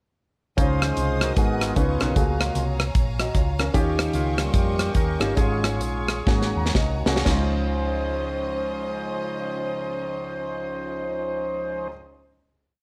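Uptempo gospel in Db major, jubilant and uplifting, swinging in 4/4 between 114 and 152 BPM as a percussive, lightly overdriven tonewheel organ with slow rotary speaker takes the lead over a round, hollow-body fingered electric bass with slides and chromatic approach notes, an intimate grand piano with audible action noise pushing close-voiced chords and short fills, a lush, vibrato-rich string pad and a punchy, mid-forward drum kit driving a two-beat praise groove, the tempo slowing from 3.7 seconds into a drum and piano fill before the drums stop at 7.4 seconds and the band holds a final Dbmaj9 chord in a large studio reverb.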